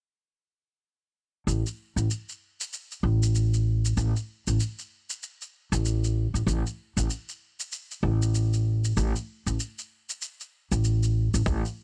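Set in a small room with a bright 1980s-style digital sheen, this earthy, mystical organic downtempo cut at 96 BPM in 4/4 swings its 16ths under a woody, thumpy pizzicato upright bass on gut strings, sitting up front with a sidechain pump from 1.5 seconds, beside an electronic shaker, until a tight, produced electronic kick punches in at 11.5 seconds.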